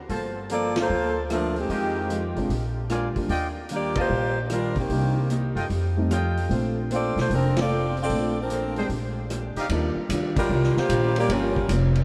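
A swinging 4/4 pulse at 150 BPM drives this joyful big band excerpt in Bb major, set up by a pizzicato upright bass with woody, thumpy gut-string tone sitting up front and a vintage drum kit whose dark cymbals, tight kick and gritty, saturated character give the groove a rolled-off, old-studio feel. The saxophone section carries the melody from 0.5 seconds, close-miked and tight, while a clear trumpet section with vibrato punctuates it with stabs in the background until 9.7 seconds. A picked parlour acoustic guitar and a woody upright piano, entering at 2.4 seconds, fill in the harmony from further back in the mix. The chords move through lush extended colours such as Gm11, Fm9, Ebmaj9 and Bbmaj9, with full-band accents landing across the passage and a shift into a new section at 9.7 seconds that reaches a Gm7b5. A huge ambient reverb places the ensemble at a distance in a big room, adding a spacious glow to this fragment cut from a longer piece.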